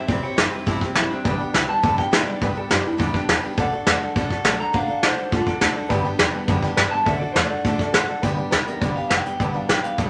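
An upbeat, rowdy rockabilly excerpt at 206 BPM in G major, cut from a longer piece and moving through C, G and D chords. An electric guitar through a small old amp carries the melody with a bright, twangy, slightly broken-up picked tone, taking a clean solo that runs until 8.2 s, when a new section begins on G. A jumbo steel-string acoustic guitar picks a full-bodied accompaniment with fresh strings and audible finger squeak, while a detuned, jangly honky-tonk upright piano with short sustain sits in the background. A woody, thumpy gut-string upright bass played pizzicato stays low and dark beneath them. Up front, a soft brush drum kit with a punchy kick and medium-tuned snare sounds roomy, and a wet studio reverb colours the whole mix.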